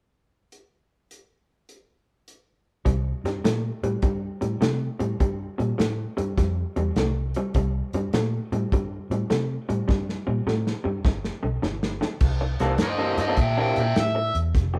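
A soul drum kit with dark cymbals and a tight kick opens this soulful, gritty electric blues shuffle alone at 0.5 seconds, swinging at 103 BPM in C mixolydian. At 2.9 seconds a slightly broken-up, lo-fi guitar riff with spring reverb enters alongside a round, foam-muted electric bass, moving over C5 and G5 chords before a drum fill leads to a C9. At 12.8 seconds a bright, overdriven lead guitar takes a short melody up front, all heard as a band playing live in one room with moderate studio reverb.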